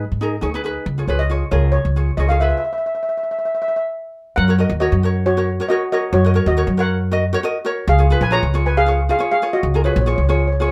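A lightly reverberant recording, cut from a longer piece, with a sunny, carefree calypso feel at 137 BPM in a straight 4/4 and the key of F# major. The upright bass sits up front, played pizzicato on gut strings with a woody, thumpy tone, while a bright, fingerpicked acoustic ukulele supplies gentle accompaniment underneath. At 1.1 seconds a double seconds steel pan takes the melody, struck with medium rubber sticks and sounding metallic and shimmering in a boxy small room, placed up front in the mix. The harmony moves from G#m to C#, then a stop between 2.6 and 4.4 seconds breaks the groove. The second section opens on F# at 4.4 seconds and returns to C# at 7.9 seconds, holding there until the clip ends.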